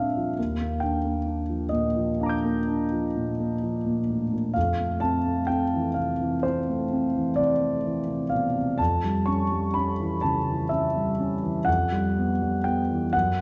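Impressionist classical solo piano sets a mysterious, nocturnal mood in this 13.4-second passage cut from a longer piece. The pulse moves slowly at 42 BPM in dotted quarters within a 9/8 metre, and the rubato phrasing lets time stretch and breathe. A single concert grand, tuned to A4 = 439 Hz, carries the whole piece, spanning from a deep, resonant D#2 up to G6. Its warm, natural tone sits up front and intimate, close enough that the quiet clatter of the action can be heard. The harmony drifts through lush, unresolved colours: a D#maj9 at 0.4 seconds, then Fmaj7, a hazy Fmaj7#5, and finally Emadd9 over an F bass. A wet recital hall reverb with a 1.3-second decay lets each chord hang in the air.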